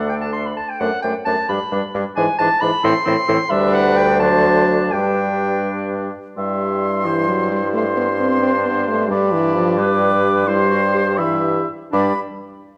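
From the first moment, all five members of a wind quintet sound together in a lively, cheerful classical-period movement in G major, taken from a longer piece. It moves in a lilting 6/8 at roughly 79-90 BPM counted in dotted quarters, with a flexible, rubato feel. The concert flute carries the melody with a pure, expressive tone, soft attack and vibrato, while the oboe adds a second line with light vibrato and a slightly distant presence. The clarinet and a mellow French horn fill in the accompaniment in classical style, and the bassoon anchors the bass with a punchy, vibrato-tinged sound. The harmony opens on D and travels through G, E7/G# and Am before settling on G, and from 6.4 s a second section moves through C/G, D5/G and G7 and back to C/G, ending on G as the flute closes at 12.2 s. A recital-hall reverb gives the dark, warm production a generous, resonant space.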